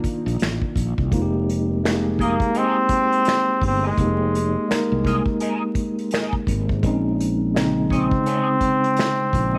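Swung sixteenths in 4/4 carry this introspective, smooth neo-soul R&B fragment, cut from a longer piece, as an unplugged drum kit played with bundle sticks sets finger snaps, hi-hat, a punchy kick and a medium-tuned snare up front. A mellow tine electric piano heard through its built-in speakers and a bright fretless bass with analog chorus move through minor eleventh chords. At 2.2 seconds a warm flugelhorn takes the melody with scooped notes, alongside a clean, picked electric guitar colored by wah and ensemble chorus, all within a small room ambience touched by vinyl crackle.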